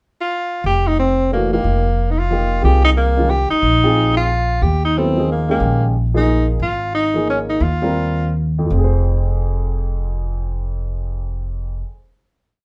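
A wet studio ambience with a short reverb surrounds a small jazz group playing live together in one room, in a brief, complete piece in F minor and 3/4 time. The mood is searching and cool, with a swung feel at a brisk 154-182 BPM that slows from 6.6 s and settles on a closing F minor chord at 8.7 s. A breathy tenor saxophone opens with a pickup and carries the solo melody up front, built from motifs in period phrases, with vibrato, scooped notes, a punchy attack and a smooth top. Upright bass joins just after, plucked on steel strings, woody and thumpy, playing a two-feel line close to the listener. A warm baby grand piano arrives at 1.3 s with natural-sounding, syncopated comping in quartal voicings, sitting lower in level than the others and moving from F9sus4 to Ebsus4 before the final resolution.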